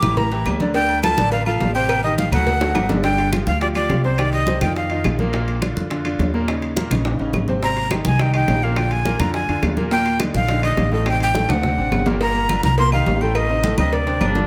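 A breathy jazz flute with tape echo and vibrato carries a driving, passionate salsa melody up front over a brilliant concert grand piano, a thumpy gut-string upright bass, damped low-tuned congas, and background cowbell and bongos, ringing agogo bells and timbales, and woody claves, with drum fills marking each turn; the flute rests from 5.0 to 7.6 seconds before a punchy, vintage trombone section cuts in at 14.2 seconds as this clip of a longer piece ends.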